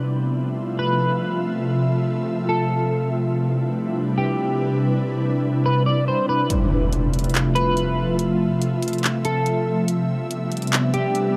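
An ethereal, detuned pad sits up front throughout this blissful, dreamy cloud-rap excerpt at 142 BPM in a half-time feel, sustaining slow-attack chords that move between Fmaj7 and Cmaj9, while a very quiet, breathy wind-like noise layer drifts beneath it until 6.5 seconds. From 0.8 seconds a dark, slightly broken-up electric guitar carries a fingered melody through analog chorus, a low-pass filter and tape echo. At 6.5 seconds an electronic impact lands as a produced trap kit of handclaps and bright hi-hats comes in, all set in a shadowy, warm mix with light reverb.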